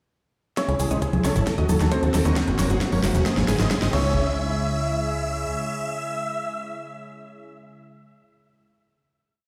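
A four-on-the-floor electronic kick sits in the background at 134 BPM in straight 4/4, with a big-room dance kit adding a huge snare backbeat, metallic programmed hats, shaker, high conga and crash, its hats, percussion and cymbals pumping with sidechain, while a tight, nasal sawtooth sequencer bass rolls in sixteenths up front. This complete uplifting trance piece in C# harmonic minor feels euphoric yet bittersweet, opening at 0.6 s with a build-up and drum fill over C#m, D#dim, F#add9 and G#sus4, as a very quiet unison pluck spins a 16-step arpeggio and, from 2.0 s, a very quiet riser adds transition effects. A huge, detuned supersaw lead carries a repeating sixteenth-note riff in thirds and sixths over a pedal note, its filter sweeping through the build, with phaser, tape echo and sidechain pumping. A clear, worn baby grand piano with tape echo plays its own repeating riff in octaves, a second very quiet pluck with a noise layer doubles the anthem part an octave higher, and a thick, warbling vintage pad holds chorused chords with a slow attack. 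The drums stop at 4.0 s and the final hit arrives at 4.2 s, ringing out in a moderate, lush hall reverb with a stone room character.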